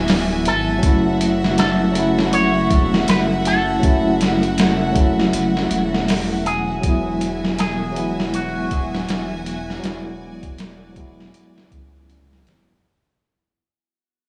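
A brooding, smoky trip hop fragment opens with a twangy, envelope-filtered electric guitar melody carrying 12-bit sampler grit and tape echo, alongside a tine electric piano with harmonic tremolo, smooth bowed violin chords with light vibrato, and a deep, rumbling detuned saw bass. A gritty, pitched-down boom bap kit enters at 0.1 s with a thumpy kick, medium-tuned snare and hi-hat, sitting up front and re-recorded in a large room, while vinyl crackle and light reverb colour the swung groove as the harmony moves between Eadd9 and F#m7. The music fades out from 4.8 s.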